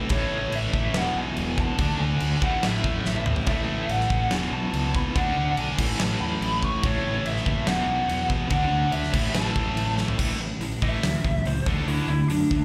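A crunchy overdriven guitar with tremolo and a bright, tight distorted guitar open this swaggering, energetic hard rock excerpt with a riff, joined at once by a growly fuzz bass, a huge up-front arena kit with a fat snare and punchy kick, and a dark, lo-fi lead guitar through a small cranked amp with slapback and tape echo, all heard as a live gig through the venue's PA in club reverb, with drum fills at 3.0 and 10.0 seconds before the lead breaks into a solo at 10.2 seconds.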